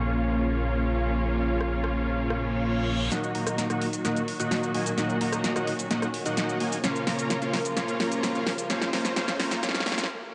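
A rich, smooth studio string section holds sustained chords beneath a huge, detuned supersaw riff coloured by cassette tape, low-pass filtering and dub echo, with a fat, saturated analog bass until 3.1 seconds, as this euphoric, powerful festival progressive house excerpt in Bb minor at 129 BPM brings in a punchy house drum kit with bright hats at 1.6 seconds and a very quiet reverse cymbal and riser at 2.5 seconds, then builds through a drum fill and a filter sweep on the supersaw over Eb minor and back to Bb minor before everything stops at 10.1 seconds in a dark, lightly reverberant mix.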